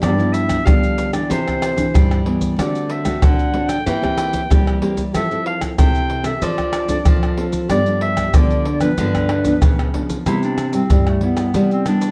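A dark, lightly reverberant production carries this sunny, joyful samba-choro cut in C major at 94 BPM in a straight 4/4, with maracas, surdo, pandeiro and tamborim sitting up front in a live room, the surdo tight and the hand drums struck hard. A classical nylon-string guitar fingerpicks the accompaniment with audible finger squeak, while a second, full-bodied nylon-string guitar fingerpicks the bass line until it stops at 11.8 seconds, as the harmony moves through chords such as G7, Cmaj9, Fmaj7 and Dm7/F. Above them a bright, distant clarinet solos in a roomy, jazz-style voice with vibrato and scooped notes, and at 10.3 seconds the music turns to a new section on Cmaj7.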